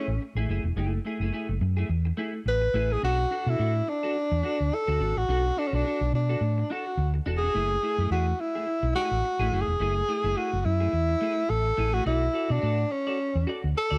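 A breathy, mellow tenor saxophone sits up front with a jazz-style vibrato solo in F# minor, carrying the melody across this driving, danceable disco cut at 106 BPM with a light sixteenth-note swing. Beneath it, a bright, twangy clean electric guitar with analog chorus picks out compressed accompaniment, while a dark, round hollow-body short-scale bass, fingered and amped, pushes up front from 0.1 seconds. The harmony alternates between F#m9 and Bm7 in a small room with light reverb.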